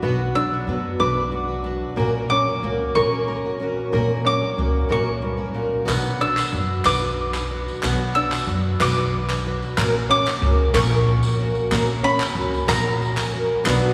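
Bathed in a long, wet church reverb, this yearning, stirring indie folk passage in 6/8 builds around a shimmering, octave-doubled twelve-string guitar, a plunky open-back banjo and a dark, woody pizzicato upright bass under a round, double-strung mandolin melody; a fingerpicked steel-string guitar gives way at 5.9 seconds to crisp group handclaps and a jingly, vintage-toned tambourine, and a brilliant upright piano touches in at 13.7 seconds.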